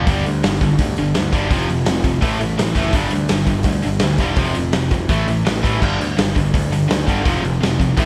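Dry, energetic and upbeat, this punk rock fragment has a raw garage drum kit up front with a punchy kick and a gritty, saturated sound with a rolled-off top. Alongside it are a growly overdriven picked electric bass and a tight distorted guitar, while an overdriven electric guitar and a double-tracked crunchy overdriven guitar sit in the background, the guitars driving a riff over G5, F5 and A5.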